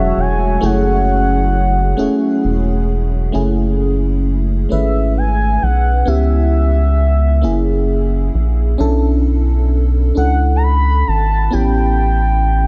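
Slow R&B in 6/8 at 44 BPM, sultry and yearning in F# minor, this excerpt from a longer piece moves from F#m9 through C#m7b5, F#7 and Bm11 to A7. A rubbery, hollow square-wave bass sits dark and up front beneath a lush, dreamy FM electric piano layered with a soft pad, treated with chorus and phaser, while a warm analog pad holds detuned sawtooth chords only until 3.3 seconds. Over the top, a smooth gliding lead with vibrato and portamento sings high in the register, bathed in chorus and a diffuse ambient delay, all within a light reverb.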